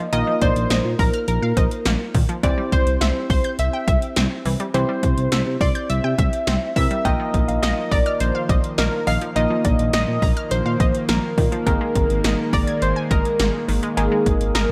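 A bell-like tine electric piano and a lush, detuned unison pluck open this wistful, bright synth-pop excerpt together, the pluck tracing arpeggios through an analog delay. Punchy 80s electronic pad drums arrive almost at once, with a gated snare, metallic hats and a punchy kick, all tape-warm and sitting up front, under a smooth, dark synth bass. The melody comes from a funky polysynth comp, mellow yet punchy, coloured by chorus and delay. A soft, round, wave-folded pluck adds a gentle second line in the background, first briefly from 0.4 seconds and again from 7.0 seconds. At that same moment a shimmering, retro pulse-width pad joins with sustained chords, filling out the harmony over the Bbsus4 and Absus2 changes. Light reverb sits over the whole excerpt.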